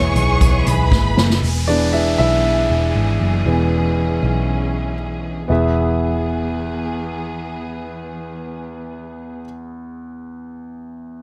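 Uplifting and gently glowing, this piano-driven pop fragment, cut from a longer piece, moves in a straight, even four. A warm concert grand piano carries the accompaniment and takes solo turns, its intimate, polished tone full of deep bass and long sustain, with the soft clatter of its action audible up front. Beneath it, a vintage muted picked electric bass adds a dark, round, foam-muted pulse, while a symphonic string section holds lush, bowed chords with a focused, smooth top. A studio violin section sings an expressive second line, and an unplugged drum kit played with bundle sticks gives a brief, roomy, distant groove with a tight kick and a medium-tuned snare before a drum fill, both ending at 1.4 seconds. An electronic downlifter then sweeps through until 5.5 seconds, the strings and bass fall away at 9.4 seconds, and light reverb lends the mix a soft sense of space.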